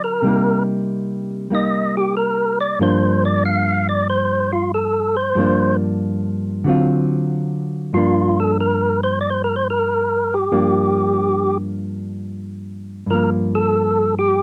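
A fat, lightly overdriven tonewheel organ carries the melody from the start over a dark, clean hollow-body jazz guitar, in a bluesy, soulful swung jazz groove at 93 BPM in G minor. Up front, with third-harmonic percussion, vibrato and a slow rotary speaker, the organ takes a solo through 7.9 s as the chords move from Cm7 to Gm7 and a D7#9, while the fingered guitar accompanies, also up front. Light reverb sits on a dry, close 1970s-style studio sound in this short cut from a longer piece.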